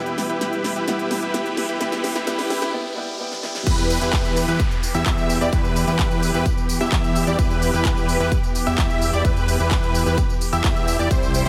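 A dense, compressed supersaw riff with vibrato drives this emotional, powerful festival progressive house excerpt at 129 BPM in E minor, pumping with sidechain compression and delay over veiled, muted strings and a dark, woody fingerpicked acoustic guitar in the background, while the big-room drum kit with its huge snare, crisp hats and handclaps builds through fills, a filter sweep, a riser and a brief break. At 3.7 seconds the drop arrives, the guitar stops, and a punchy, up-front electronic kick enters with a fat, wave-folded analog bass and a bold, bright unison lead playing arpeggios with ensemble chorus and delay.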